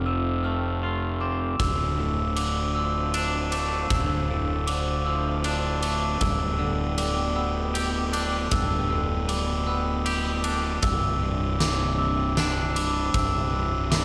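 A straight, unhurried three-beat lilt carries this cinematic, soaring post-rock passage, cut from a longer piece. A fuzz-soaked, fingered electric bass sits up front with a dark, round, punchy tone, while a twangy, clean electric guitar traces arpeggios through tape echo and slapback echo. High above, a glockenspiel struck with soft plastic mallets rings out mellow, bell-like arpeggios, also touched by tape and slapback echo, and a warbling, detuned, lo-fi pad hums sustained chords in the background with chorus and its own reverb. At 1.6 s a huge arena drum kit arrives with a punchy kick, fat snare and bright ride cymbal, placed close and forward. The harmony moves from Fadd9 through Dm7 and Gadd9/D to Cadd9, and a lush hall reverb gives the whole mix a big arena sound.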